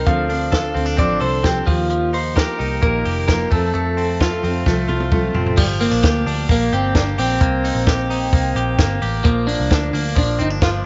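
Youthful and bright, this short cut of jangly indie pop moves at 131 BPM in a straight 4/4. An electric guitar through a small old amp carries the melody with a slightly broken-up, compressed tone and a slapback echo, while a direct-recorded clean guitar adds twangy, bright arpeggios that carry the same slapback echo. A fingerpicked steel-string acoustic with a full-bodied dreadnought sound fills out the accompaniment until 5.6 seconds, when the harmony shifts from Dm7, Ebadd9 and F to Gm7, Cm7 and Gm7/Bb. Underneath, a foam-muted vintage bass gives a round, dark pulse, and a compact cocktail drum kit sits up front with a punchy kick, high-tuned snare and dark cymbals, playing a fill from 4.7 to 5.6 seconds. The sound is dry at the drums, with light studio reverb overall and a soft top end.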